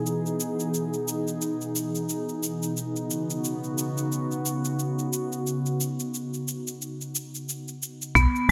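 A lightly swung 16th-note feel at 89 BPM in 4/4 sets this peaceful, earthy organic downtempo excerpt in B major. Electronic cabasa and metallic hi-hats carry the rhythm from the start, layered and tape-tinged under a studio reverb. Up front, a warbling, nostalgic pad with a lo-fi, detuned character holds sustained chords through chorus, its own reverb and a sidechain pumping, moving from Emaj7/B to Badd9 at 2.8 seconds. The pad stops at 8.1 seconds, and at 8.2 seconds a bright hard-mallet marimba arpeggio arrives with a woody, round FM bass, both sitting forward, over a very quiet, deep electronic kick. A moderate plate reverb and bright 1980s-style digital production frame the sound.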